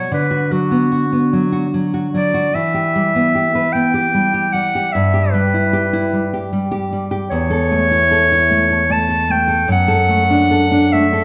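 A clear, soft-attacked clarinet sings a tender, serene classical melody up front over a dark, full-bodied nylon-string guitar fingerpicking the accompaniment on fresh strings in this romantic duo, which moves in a rubato 3/4 at 75 BPM through Bm/D, Em and A/E before settling into D major from 7.3 seconds, tuned to A4 = 439 Hz and bathed in the lingering reverb of a recital hall.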